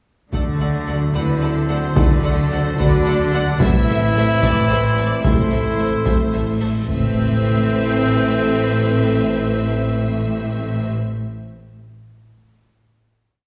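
In a straight 6/8 at 73 BPM, a taiko ensemble hits single big drum strokes with hard sticks until 6.6 s, driving this heroic, dark cinematic film cue in A dorian, while the cello section plays bass on the beats, the double basses double that line, and the violas and a second violin line hold repeated notes in the background. From 1.1 s an intense, distant violin section carries the counter-melody over mellow French horn and very quiet trombone sections sustaining chords, and a clear, vintage-toned solo trumpet adds stabs that double the tune in thirds and sixths. A huge reverse cymbal swells into a low impact at 6.9 s, opening onto a lush final chord that rings in a wet scoring-stage reverb heard from further back in the room.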